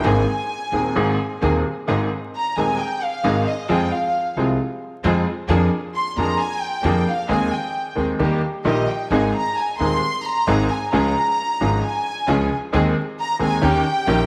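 Passionate and dramatic, this tango excerpt moves with a rubato feel in 4/4. An intimate, close violin section carries the solo line, bowed with light vibrato and sul tasto, while a brilliant, up-front baby grand piano with short sustain supplies the accompaniment and a woody pizzicato upright bass on steel strings anchors the low end. A lush, distant symphonic string section adds focused stabs in the background, and the mix sits in a wet echo chamber reverb with small room ambience and a layer of vinyl crackle.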